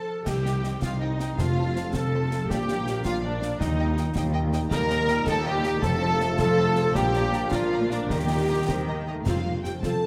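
The viola section stands out most, carrying a close, expressive accompaniment with vibrato and portamento in this heroic, triumphant cinematic adventure cue in 6/8, moving at 107 BPM in F mixolydian. Behind it, two lush violin sections sit in the background, one singing the focused, smooth-topped melody and the other a second line. A hollow, airy flute ensemble and a close-miked clarinet add their own second lines very quietly, while a distant, roomy trumpet section adds clear stabs and a ringing, fingerpicked harp spins arpeggios. Mellow French horns and trombones hold sustained chords, and a dark, woody cello section and double basses anchor the bass as the harmony travels from C minor through F, B-flat and E-flat. Concert snare, bass drum and bright clash cymbals play close and dry, and round, soft-mallet timpani strikes on F at 1.4, 5.8 and 9.3 seconds. Light reverb and detailed microphones keep this short cut from a longer piece clear and present.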